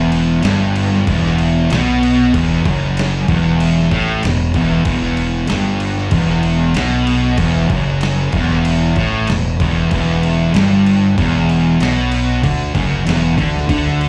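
A straight 4/4 pulse drives this sludgy, hypnotic stoner and doom metal passage, cut from a longer piece and heard as a live gig through the venue's PA with light club reverb. A double-tracked, picked fuzz guitar riff sits up front with distortion and a slapback echo, beside a growly, bright fingered bass with overdrive. From 0.1 s a gritty, compressed sampler-style kit adds a thumpy kick, medium-tuned snare and crash, all resting on a single E minor chord.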